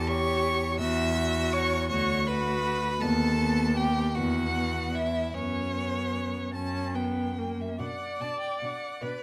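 Classical and yearning, this solemn, slow romantic string quartet movement in B minor moves with rubato in 6/8 at about 47-56 BPM, with a rich, expressive first violin singing the melody with vibrato and portamento up front, a clear, smooth second violin carrying an even second line, a warm viola accompanying with expressive portamento, and an intimate, airy-bowed cello holding the bass close and forward, all set in a moderate recital hall reverb and closing on a B minor chord at 7.8 seconds as a new section begins in this excerpt from a longer piece.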